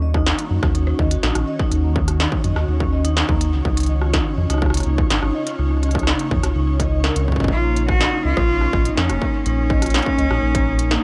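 A rich, nasal cello played by one bowed player with light vibrato arrives up front at 7.5 seconds, carrying a tape-echoed melody over this glitchy, cerebral IDM excerpt in Eb minor at 124 BPM, moving through Ebm7, Db and Bbm. Beneath it, a metallic vibraphone with medium mallets and slow motor vibrato ripples out arpeggios roughened by 12-bit sampler grit and tape echo, while a glassy, ethereal FM pad sustains chorused chords in the background with sidechain pumping, and a round, deep analog bass sits firmly up front. A distorted electronic kick and an industrial kit of clanging snare, rim click and crisp tape-echoed hats drive the 4/4 pulse, with a flickering granular texture drifting in from 0.5 seconds, all in a dry, close mix.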